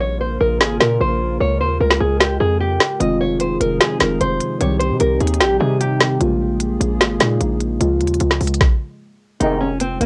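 A home recording on cassette frames this eerie, hard-hitting half-time trap excerpt in F minor at 150 BPM, where a fingerpicked nylon-string guitar melody, filtered and tape-worn, sits up front over a dark analog pad and a punchy sine 808 bass before knocking trap drums with 12-bit grit arrive at 0.6 seconds, muted felt-like synth keys with chorus and phaser join from 3.0 to 8.6 seconds, and a brief stab from a vintage brass ensemble lands at 9.4 seconds.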